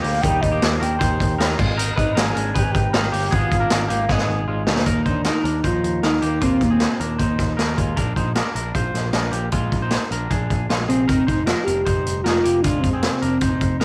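A lightly reverberant small-room sound frames this breezy, bright jangly indie pop fragment, where a soft, round synth lead layered in octaves carries the melody through chorus, phaser and slapback echo, pausing at 7.8 seconds before returning at 10.9, over twangy, slightly broken-up guitar arpeggios from a small old amp, a dark, punchy picked bass, and a gritty, saturated garage drum kit with a boomy kick that sits up front and plays a fill at 4.1 seconds.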